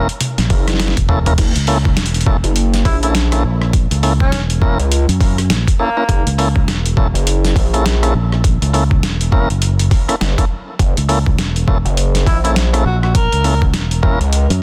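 Lightly overdriven tonewheel organ stabs with key click, pumping and delay open over an up-front fingered electric bass and a gritty, pitched-down boom bap sampler-style kit whose fill runs from 0.2 s, setting up a swaggering, funky glitch hop groove at 102 BPM, swung on the sixteenths around an F#7#9 chord, joined by an aggressive, resonant oscillator-sync synth bass and a thumpy electronic kick, while a clear, distant tenor saxophone with light vibrato and delay drifts in at 2.8 s and returns at 12.3 s in a dense, heavily limited, dry master.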